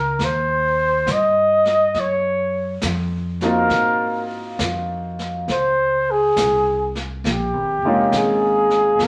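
A jazz ballad fragment with a late-night, romantic mood and a relaxed swung feel. A mellow flugelhorn carries the solo melody from the opening, its soft attack, vibrato and scooped notes sitting up front while keeping a roomy glow. Beneath it, a woody, thumpy upright bass with gut strings is plucked low, and a brush kit on a medium-tuned snare and hi-hat joins at 0.2 s with a natural studio-room sound. A smooth, vintage grand piano enters at 3.4 s, adding close, up-front accompaniment over the shifting chords from Cm through Ebm9 and Ab13 to Db69. A wet studio reverb wraps the whole ensemble, lending an intimate after-hours haze.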